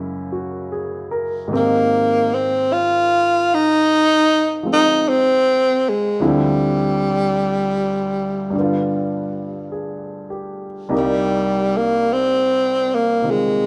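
Melancholic and intimate, this slow jazz ballad fragment at 51 BPM in swung 4/4 opens on a warm concert grand piano with deep bass accompanying alone until a breathy tenor saxophone solo enters at 1.6 s, its subtone, vibrato and scooped notes up front over chords moving from Gb9 through Abmaj9 and Dm7 to G7 and Cm7, all set in a moderate large studio reverb.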